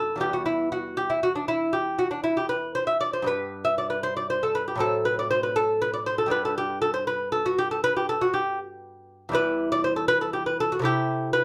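Classical, a baroque-style dance for solo lute, this short excerpt is cut from a longer piece and carries a serene, flowing mood. It moves at 79 BPM in dotted quarters within 12/8, played with a free rubato and tuned to A4 = 438 Hz. The fingerpicked lute sits up front throughout its 11.4 seconds, its gut double strings, some doubled at the octave, giving a delicate, warm tone across a span from E2 to E5. The harmony opens on E minor, passes through G and F#dim/A, returns to G and then E minor, and closes at 10.8 seconds on Am7/C. A moderate studio reverb with a short half-second tail lends the instrument a soft sense of space while keeping its plucked detail clear.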